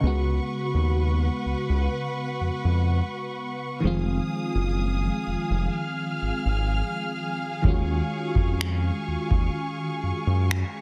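Contemporary R&B with a late-night, moody feel, this short piece cut from a longer one moves at an unhurried pace in a straight 4/4. An FM electric piano with tremolo and phaser plays mellow, decaying accompaniment chords from the start, while a muted string section, bowed con sordino with vibrato, holds dark, veiled sustained chords that sit distant and lush behind it. Up front, a smooth, saturated synth bass blending sawtooth and triangle tones carries the low end. The harmony moves from Db7sus4 to Fm7 and then to Ebm11. At 7.6 seconds a booming analog drum machine enters with a deep kick and finger snaps, its tape-warm sound re-recorded in a large room and placed up front, with soft clipping on the snare. The whole sits in digital ambience with a dense, heavily limited modern master.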